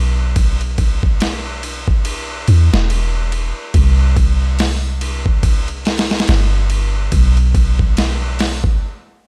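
A loping, swung 4/4 groove sets a brooding, dark trip hop mood in this short excerpt, with a soft 808-style bass entering first, deep, round and sine-like, its fast attack decaying into a saturated low hum. At 0.4 seconds a dusty, sampler-style soul drum kit joins up front, compressed and overdriven, with a thumpy kick, medium-tuned snare, hi-hat and ride cymbal carrying grit and a touch of studio reverb. Both parts cut off together at 8.8 seconds, leaving a brief stop in an otherwise dry, close sound.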